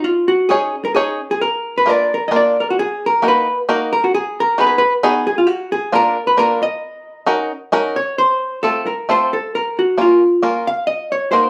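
Bittersweet and nostalgic, this musette waltz in 3/4 sways with a light swing, drawn from a longer piece and heard from further back in a small, reverberant room. A vintage hollow-body electric jazz guitar carries the melody up front with a dark, clean, picked tone, while a bluegrass banjo enters at 0.5 seconds to accompany it, twangy and percussive under its fingerpicks. The minor-key harmony moves through a suspended opening chord and seventh chords before shifting to a new section at 8.2 seconds that settles back on the home minor chord.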